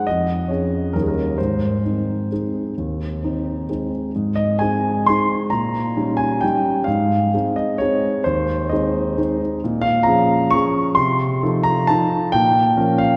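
Bathed in a long, wet church reverb, a dark, mellow concert grand plays solo, up front with audible action noise and deep bass, in this elegant, wistful classical waltz in Ab major, cut from a longer piece, moving in rubato 3/4 between 124 and 147 BPM through harmonies such as Eb7 and Bbm7 before arriving on Bbm at 12.3 seconds.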